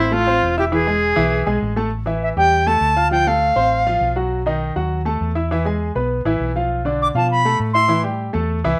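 Fiery and danceable, this short Latin cut in A minor drives along at 201 BPM in a straight 4/4 feel. A bright, reedy silver concert flute carries the melody up front, its pure tone softened by vibrato, a gentle attack and rolled-off highs; it plays from the start until 4.2 seconds, drops out, then returns briefly between 7.0 and 8.0 seconds. Underneath, a clear, polished baby grand piano supplies the accompaniment throughout, sitting present in the mix across a broad register. A hollow-body short-scale electric bass, played with the fingers, adds a dark, round, amped low end for the whole passage. The harmony opens on a rootless Dm9 and moves through chords such as Dm7, B7 and Bm7b5 before settling on Am7, all heard in a rough home demo mix with a moderate studio reverb.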